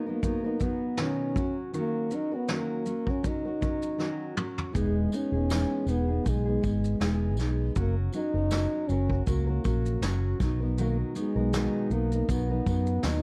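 A dark, classical-style French horn carries the melody over fingerpicked, full-bodied steel-string acoustic guitar in this easy-going, sunny acoustic pop excerpt at 80 BPM with a light 16th-note swing, where a vintage brush kit with a punchy kick joins at 0.2 seconds, a drum fill leads in a round, mellow fretless bass at 4.7 seconds and a jingly tambourine in the background at 4.8 seconds, and the chords move from Bmaj7 through D#m7, Emaj7 and F# back to Bmaj7 under light reverb and a dark, warm production.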